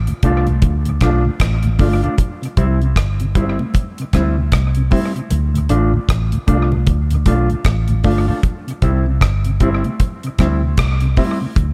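A round, foam-muted fingered electric bass sits up front alongside a dry reggae kit with a tight kick and analog delay, its kick dropping out from 5.3 to 6.1 seconds, while a dark clean guitar with dub echo, a mellow tonewheel organ with chorus vibrato and slow rotary speaker in the background, and very quiet high-tuned congas fill out this laid-back, meditative roots reggae excerpt at 77 BPM with a swung feel, moving between Dm and C in an echo-heavy mix with little reverb.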